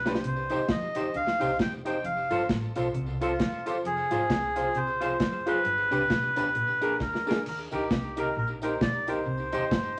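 A short, wet small-room ambience and a bed of vinyl crackle frame this driving, energetic ska excerpt, cut from a longer piece and moving at 133 BPM in 4/4 with a swung eighth-note feel. Up front, a reedy, breathy, nasal melodica carries the melody, close-miked and full, while the deep reggae drum kit sits just as forward with a dark, dry, rolled-off sound, a tight kick, a medium-tuned snare, hi-hat and crash, opening with a fill and adding another from 7.0 to 7.5 seconds. An upright piano, woody, slightly detuned and vintage with long sustain, plays stabs alongside a dark, hollow-body semi-hollow electric guitar whose clean, fingered accompaniment is washed in spring reverb and tape echo. A clean, picked electric guitar lays down a low riff through tape echo, the pizzicato upright bass adds a steel-strung bottom end in the background, and a jingly tambourine with its own tape echo sits further back. 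The harmony moves from Cm through F, Fm, G and Bb7, then shifts to Eb as a new section arrives at 7.5 seconds before returning to Cm.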